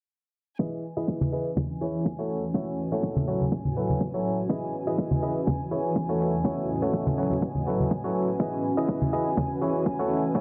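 A clear, worn grand piano riff sits up front with a filter sweep, digital delay and sidechain pumping in this feel-good, euphoric piano house excerpt at 123 BPM in E major, carried by a punchy, overdriven electronic kick, bright tambourine and congas, soft sul tasto studio strings holding pulsing sidechained chords, and a blurred, detuned granular cloud pad that drifts in at 1.7 s over a small room ambience.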